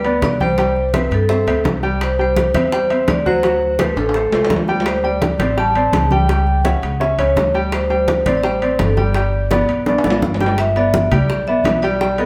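A ringing, metallic vibraphone played with medium mallets and its motor off carries the melody in this sunny, joyful salsa, cut from a longer piece and moving at 168 BPM in G major, tuned to A4 = 437 Hz. Beneath it sit a bright, intimate baby grand piano with audible action noise and a woody, thumpy gut-string upright bass played pizzicato, both up front. Low-tuned congas, metal-shell timbales and tight, high-tuned bongos, which join at 0.2 s, fill out the percussion, with drum fills at 4.0 and 9.5 s, while the band plays live together in a large, reverberant studio and the harmony moves through suspended and diminished chords before settling on G6 as a new section opens.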